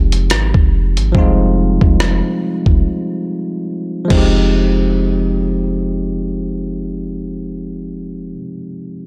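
This brief cut from a longer contemporary R&B piece opens on a bell-like tine electric piano, bright and clean, sitting up front as it voices a lush Fm9 chord between F3 and G4. The mood is longing and sensual, moving at a slow 71 BPM in 4/4 in F minor, with a swung sixteenth-note feel. Underneath, a soft 808-style bass rings deep and round between F1 and Ab1, its sine tone striking with a fast attack and decaying into darkness, thickened by tube saturation. A dusty soul sampler-style drum kit of kick, hi-hat, rim click and crash cymbal plays from 0.1 to 4.3 seconds, compressed and gritty with a thumpy kick and a tape-warm character, re-recorded in a large room yet kept close. A break arrives at 2.8 seconds, and after the drums drop out the bass carries on to 8.4 seconds while the electric piano lingers until 9.1 seconds. The overall sound is dry and raw, with the grain of a hardware recording.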